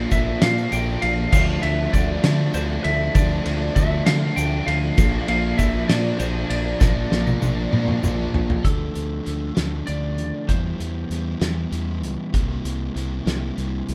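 A loose, up-front indie drum kit with a fat snare, punchy kick and dark cymbals in a pumping room drives this cool, bittersweet indie rock excerpt in 6/8 at 65 BPM in D minor, beneath a twangy, slightly broken-up lead guitar melody with plate reverb, a crunchy overdriven guitar riff, a fuzz guitar with chorus that stops at 8.6 seconds after a drum fill, a round fingered bass and a grainy tube shaker in the background, all in a rough home demo mix.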